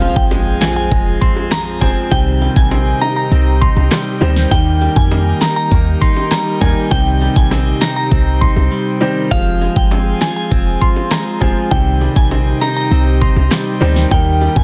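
A dense, heavily limited modern mix in a digital ambience frames this sultry, bouncy dancehall excerpt in C minor at 100 BPM, with a knocking, up-front pop kit of fat snare with soft clipping, crisp hats, handclaps and rim clicks over a deep, boomy 808-style bass, while a glassy FM synth bell carries the melody through chorus, phaser and delay from 0.2 seconds. A clear, boxy grand piano, a twangy clean electric guitar playing arpeggios and an airy, breathy pad pumping with sidechain fill out the Fm, Cm and Eb changes, with tight, high-tuned bongos sitting very low. A very quiet electronic impact opens the clip, and a brief break arrives at 8.7 seconds.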